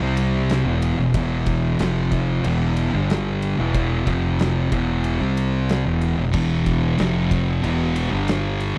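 A thick fuzz guitar opens this stoner and doom metal excerpt at 92 BPM in a straight 4/4, playing a dark, picked riff up front in E phrygian, joined at once by a round, overdriven fingered electric bass that sits low beneath it. An oversized, low-tuned acoustic drum kit comes in at 0.2 seconds, with a fat snare, a punchy kick, crash and ride cymbals, and a saturated, gritty tone whose top end is rolled off, set in a bright stone room. The riff moves through power chords on C, E, F and G, circling back to E between each change, which gives the passage an ominous, hypnotic pull. At 6.3 seconds a second distorted fuzz guitar joins in the background, adding weight to the lower register until the cut ends at 8.8 seconds. The sound is dry and close in the manner of a 1970s studio recording, with little reverb on the instruments.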